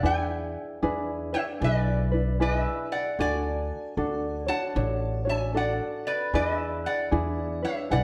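A bright, metallic, nasal lap resonator guitar carries the melody up front, played with slide and fingerpicks, in this languid, sunny Hawaiian passage cut from a longer piece, with a relaxed swing on the eighths. A light, thumb-plucked tenor ukulele supplies warm accompaniment, while a woody, thumpy pizzicato upright bass on gut strings anchors the low end as the harmony moves from E7 to Dmaj7 at 3.2 seconds and back to E7. All three parts sit close in a dark-toned mix, washed in the wet reverb of a recital hall.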